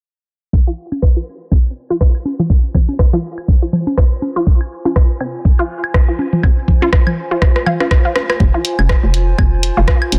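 A knocking, up-front electronic kick opens this cool, sparse minimal techno cut with a swung 16th feel, soon joined by a squelchy, bright resonant blip pluck riff with tape echo and a filter sweep, tape-warm bongos, woodblock and congas, and the hi-hat and rim click of a punchy analog drum machine, while a warbling, nostalgic lo-fi pad with phaser and sidechain pumping fades in from 2.9 seconds, and after a drum fill a hollow, bouncy FM bass enters at 8.4 seconds.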